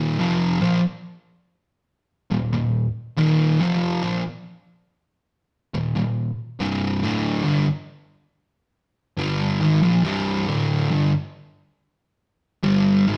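Brooding and sludgy, this metal fragment, cut from a longer piece, crawls at 70 BPM in C minor, with a lone fuzz guitar playing in a low register. The picked, double-tracked guitar sits up front with warm, compressed distortion, moving from an Eb5 power chord to C5 at 6.6 seconds. A moderate stone-room reverb and tube saturation give the rough rehearsal-room recording a gritty, enclosed character.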